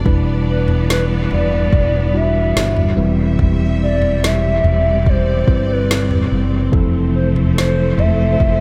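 This short cut from a longer pop ballad opens with a mellow tine electric piano, a bowed cello section and a warm string section sounding together over a round, dark fretless bass that sits up front with an ensemble chorus on it. At a slow, straight 72 BPM in 4/4, the mood is emotional and heartbroken, moving through Em7, Cmaj7/E and Fmaj7. A smooth, electronic R&B drum kit with a soft kick, woody snare and toms comes in at 0.1 seconds, its sound carrying the character of a small room. At 0.5 seconds a hollow, clarinet-like synth lead takes the melody, soft-edged and sustained with vibrato, chorus and dub echo. The cellos add a focused second line with vibrato while the upper strings hold expressive, gliding chords, and the echo trailing off the piano, cellos and lead gives the mix a spacious, lightly reverberant feel.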